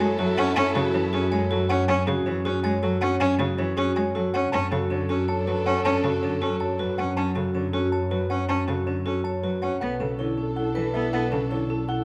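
Minimalist classical pattern music in 7/8, pulsing at 318 BPM in straight eighths with an urgent, hypnotic drive, moving from F#m7 to a rootless Bm7/F# and on to Bm9 near its close in this cut from a longer piece. A concert grand piano with deep bass and short sustain carries the melody over ringing, metallic vibraphone arpeggios struck with hard mallets, while an up-front bowed cello and an expressive bowed double bass section supply accompaniment and bass. A soft-attacked French horn in the background and a focused chamber string section holding sustained chords enter together in three passages, at 0.0, 4.5 and 9.8 seconds, all set in a moderate recital hall with close, detailed microphones.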